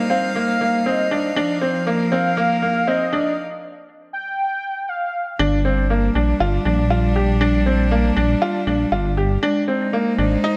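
A worn, woody upright piano plays a slightly detuned riff with tape echo at the front of this melancholic, moving excerpt of piano and strings electronica, set at 119 BPM in G phrygian. An intimate string quartet with airy bowing and light vibrato holds sustained chords alongside it, while a deep, rumbling detuned saw bass, high-pass filtered, anchors the low end. A velvety, chorused synth lead carries the melody through the build-up and a break from 3.4 seconds, then falls away as the drop lands at 5.4 seconds, all set in a lush hall reverb.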